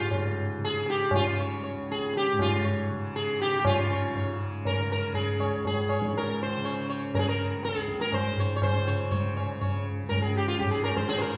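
Radiant and meditative, this Hindustani classical excerpt in raga Yaman on Db moves at 120 BPM in a straight 5/4, with a bright, buzzing sitar up front singing the melody over its shimmering sympathetic strings, a softly plucked, warm tanpura drone beneath, and low-tuned, ringing tabla sounding distant, all bathed in a wet recital-hall reverb heard from further back in the room, tuned to A4 = 442 Hz, and shifting into a new section at 3.6 seconds.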